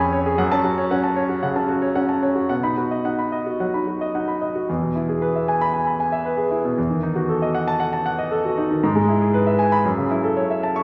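A clear, up-front concert grand piano with a deep bass rings through the wet reverb of a scoring stage in this short cut from a classical virtuoso piano study in E major. Playing solo across a range from E2 to C#6, the piano moves at a flexible, rubato 108 to 119 BPM in 4/4, its heroic, sparkling character carried by harmony that leans from F#m to B before settling on E as a new passage begins at 4.7 s. The closing moments drift through E/G# toward an F#m7 as the fragment ends at 10.8 s.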